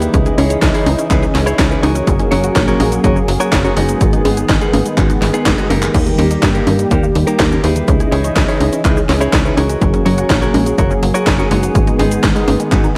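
A light reverb and a layer of vinyl crackle frame this danceable, melodramatic italo disco passage, cut from a longer piece, in a straight four-four feel. A punchy, overdriven electronic kick anchors the groove alongside a layered house kit of cabasa, congas, crash cymbal, handclaps, hi-hat and a cracking snare, bathed in gated reverb, with a drum fill at 5.5 seconds. Underneath, a tight sequencer bass drives along with a nasal, evolving sawtooth-and-square tone and a fast filter pluck. A smooth, mellow analog pad with chorus sustains slow-blooming, detuned chords through C#madd9, F#add9, G#m and D#, while a lush, very quiet unison pluck spins arpeggios alongside it. A clean, compressed electric guitar, recorded direct and picked, adds stabs that echo through a digital delay.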